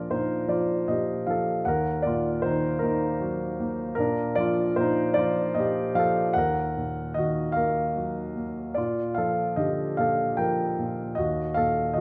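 In a slow, rubato 6/8 at 51 BPM, this tender, calm classical excerpt features a warm concert grand piano alone in Bb major, up front with a deep, natural bass reaching down to Eb2, as Bbmaj7 alternates with Ebmadd9 before settling on Ebm at 11.2 seconds, all within a moderate scoring-stage reverb.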